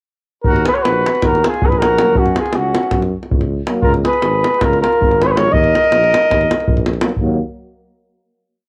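A roomy, wet home cassette recording carries this short, bittersweet and restless Balkan brass band piece in 9/8 at 321 BPM in Eb minor, where a distant flugelhorn leads with a motif-based melody up front over a tight, compressed davul two-stick pattern and a tuba with light vibrato playing root and fifth on the main beats, while a vintage trumpet adds a background harmony line mostly in thirds, a smooth-topped trombone and a euphonium join at 2.0 seconds with offbeat chord lines, and the band closes on a final Ebm chord at 7.2 seconds.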